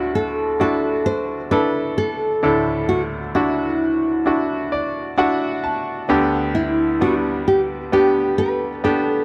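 Pop in D major at a slow 66 BPM, hopeful and tender, where a full-bodied, fingerpicked nylon-string guitar carries the melody up front over a bright, polished grand piano accompaniment with short sustain, the piano adding a fill from 4.3 to 6.1 seconds as the harmony moves from Dadd9 to G/D, all set in a lush hall reverb with a dark, warm production and tuned slightly low to A4 = 436 Hz in this brief cut from a longer piece.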